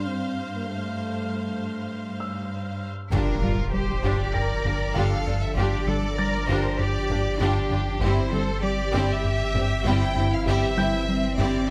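A rubbery square-wave bass riff and a deep sub bass join this brooding, vast hybrid orchestral and electronic film cue at 3.1 s, along with a background electronic impact, bowed double basses, a smooth chamber violin melody and a focused second violin line, all layered over lush viola and cello sections, mellow French horn chords and a bright, tape-echoed baby grand piano that sound from the start.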